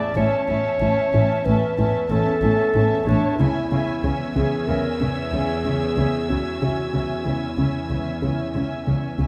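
Set in a straight 5/4 at 93 BPM, this short cinematic excerpt moves with a tense, eerie unease. Muted chamber violins carry a veiled, con sordino melody high in the register, while a dark, smooth-topped clarinet and a muted studio violin section trace second lines beneath it, over the close, bowed accompaniment of muted violas. A plucky analog bass riff, punchy and funky with its fast-attack filter pluck, sits in the background alongside a nasal, string-like drone whose detuned sawtooth layers and noise carry their own built-in reverb. From 0.2 seconds a muted double bass section and a muted cello section add a dark, shadowy bass foundation, and at 3.4 seconds a second group of muted chamber violins enters faintly on a high texture as the harmony moves from A to C#m. A moderate scoring stage reverb gives the ensemble a spacious depth.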